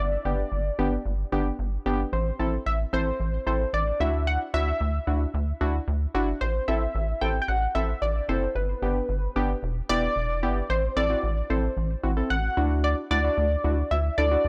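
A rubbery square bass sits up front in this melancholic, nocturnal synth-pop excerpt, its hollow, bouncy wave-folded tone carrying a resonant filter pluck, a moving notch and a dark edge roughened by transformer saturation. Over it, a funky polysynth comp carries the melody from the start, punchy and mellow at once, with detuned sawtooth and triangle layers, a sub octave and a chorus sheen. Round analog keys join at 0.3 seconds as accompaniment, their detuned sawtooth voices decaying through a filter sweep and chorus. The music moves at 112 BPM in a straight 4/4 in A dorian, cycling through G, Am, Dadd9 and Em before a second section arrives at 10.7 seconds, alternating Am and Dadd9. The sound is dry and gritty, like a hardware recording, set in a digital ambience, and the fragment stops at 14.5 seconds, cut from a longer piece.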